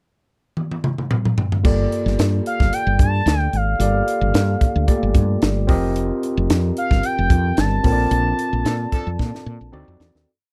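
An expressive sawtooth synth lead, smooth and up front with chorus and slapback echo, sings motif-based call phrases over a crisp fusion drum kit's sixteenth-note groove with its high-tuned snare and punchy kick, an agile, round fretless bass using chromatic approach notes, and a barky, overdriven tine electric piano holding lush chorused chords in this nocturnal, bittersweet 1980s jazz-funk pop piece at 111 BPM in G minor, moving from Gm9 through F9sus4 and Bbmaj9 to D7b9, while a light-vibrato horn section adds a brief punch at 8.7 seconds amid the band accent as the piece fades out from 8.1 seconds.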